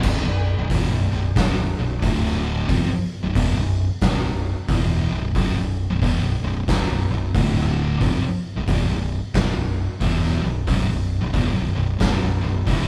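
A heavy, hypnotic stoner and doom metal riff opens on a B5 power chord, with two thick fuzz guitars, a growling fingered electric bass and an oversized low-tuned drum kit all sounding from the first moment. The tempo sits at 90 BPM in 4/4 with a swung eighth-note feel, in B minor, and the harmony shifts between B5 and D5, moving to D5 at 2.0 seconds and again at 7.4 seconds before returning to B5. The drum kit is up front, with a fat snare, punchy kick and dark cymbals alongside hi-hat and crash, its acoustic sound saturated and gritty with a rolled-off top in a bright stone room. Both guitars are picked, distorted and fuzzy and sit in the background, one dark and the other warm, while the bass beneath them is bright, overdriven and direct. The band plays live in one large studio with moderate reverb, and this 12.9-second fragment is cut from a longer piece.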